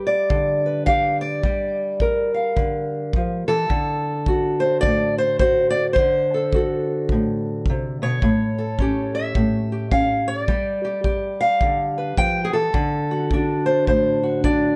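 A fingerpicked steel-string parlour guitar sits up front, its boxy, warm tone carrying the melody across a range from low A2 up to G5. This is rollicking, gritty acoustic country blues in 4/4 with a loose swing on the eighth notes, a short cut from a longer piece. A punchy kick drum, played with brushes and sounding natural in a small room, enters at 0.3 seconds and holds the beat beneath the guitar until 14.6 seconds. The harmony moves from G through Gm7 to D7, then A7 and G7 before settling back on D7. A light reverb gives the duo a touch of space, while the guitar stays close and present through to 14.8 seconds.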